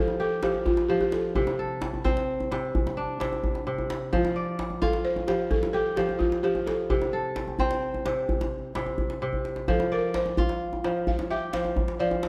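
Flowing and hypnotic, this West African traditional excerpt moves at 86 BPM in a straight 12/8 in F major, its harmony cycling between F-based chords and open fifths on C and F. A ringing, crisp, fingerpicked kora sits up front with arpeggios from C3 to D5, while a woody, buzzing balafon played with soft rubber mallets carries the melody between F4 and F5 in a dry, boxy small-room sound. A medium-tuned djembe, also close and present, joins at 0.1 seconds and plays a short fill at 9.3 seconds, all set in a moderate recital-hall reverb.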